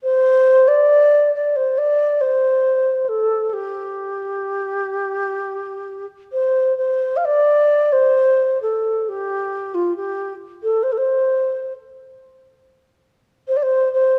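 Closely miked and finely detailed within a moderate concert-hall reverb, this short cut from a longer Chinese traditional piece features a solo end-blown bamboo xiao, airy and mellow with vibrato and tongued notes, carrying a festive yet graceful line in G shang mode at a rubato 68 BPM across 14.2 seconds, ranging from F4 to F5.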